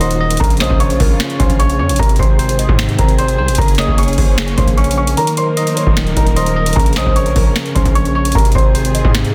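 Dark and menacing, this half-time trap excerpt sets a mellow, boxy grand piano melody with tape echo over a bell-like tine electric piano, lush bowed strings in the background, a distorted, saturated 808-style bass and a booming analog drum machine with crisp snare, metallic hats and finger snaps, while a velvety detuned synth lead with chorus enters at 0.6 seconds and the kick drops out briefly at 5.2 seconds over a Bbm, Ab, Gbadd9, Ebm progression.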